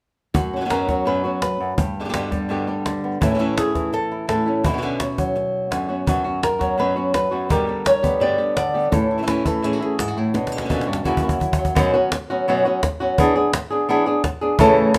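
Fiery and mournful, this flamenco excerpt at 169 BPM sets an up-front, boxy fingerpicked guitar melody with audible finger squeak against a bright second guitar playing stabs until 11.4 seconds and a woody cajon with faint snares, moving through F#sus4, G, A and Bmadd9 before a drum fill from 10.3 seconds leads into a closing section on F#sus4 and E7, all in light reverb.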